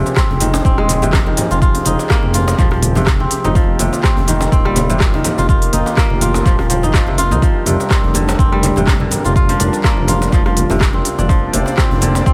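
A detuned sawtooth pad with chorus sits in the background under crisp, fingerpicked kora arpeggios with dub echo and a mellow, tube-saturated synth bass, all three pumping to the sidechain in this hypnotic, earthy afro house excerpt at 124 BPM in F dorian, swung on the sixteenths. From 0.1 seconds a tape-colored afro-pop kit of handclaps, smooth hi-hat, rim click and shaker enters with a very quiet, distant djembe with metal rattles, and at 0.2 seconds a deep electronic kick joins to drive the groove alongside ringing, hard-handed congas in a small room. The harmony moves through Fm7, Eb, Gm7/F and Bb/F, and studio reverb surrounds the mix.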